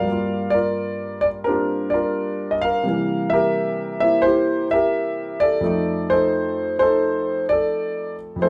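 A concert grand piano carries this solo jazz excerpt alone, heard up front and intimate, with audible action noise and a deep, natural bass. The mood is relaxed and swinging, set at 86 BPM in 4/4 with a 68% swing on the eighth notes, in F major and tuned to A4 = 443 Hz. The piano covers a range from F2 to E#5 across the full 8.5 seconds. The harmony moves from Gm7 at 0.1 seconds to C7 and then to F7. A moderate studio ambience with a short 0.5-second decay gives the instrument a little air while keeping it close and warm.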